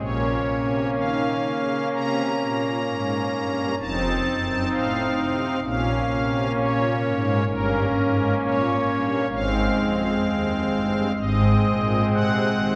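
Classical chorale-style music for solo pipe organ, reverent and majestic, unfolding in a flexible, rubato 4/4 in this short excerpt from a longer piece. The organ sounds its string celeste stops, a soft, shimmering, romantic voicing that sits up front and spans from deep pedal notes to a high treble, moving from B-flat minor harmonies through a diminished chord before settling toward A-flat major around 7.5 seconds. A wet church reverb with a long decay surrounds the instrument, heard from further back in the room.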